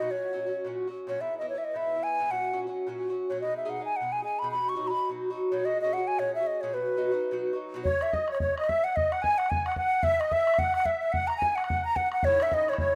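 A rough home demo sound with light small-room reverb frames this bright, cheerful Celtic reel excerpt, swung and brisk in 4/4, where an airy wooden flute with vibrato and a crisp attack carries the melody up front over picked, metallic double strings of Irish bouzouki. At 7.8 seconds a shimmering, reedy musette accordion enters with a band-limited, vintage second line, and at 7.9 seconds the bouzouki drops out as a boomy, saturated bodhran joins. The bouzouki returns at 12.3 seconds over a closing minor chord.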